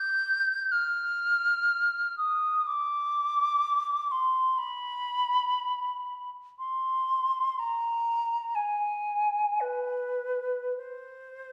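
Bathed in the wet reverb of a church or concert hall, this short classical passage from a longer work features an unaccompanied silver concert flute playing in free time in C minor, its pure, hollow tone with vibrato and crisp attacks ranging from B4 to G6 for 11.5 seconds in a mournful, yearning mood.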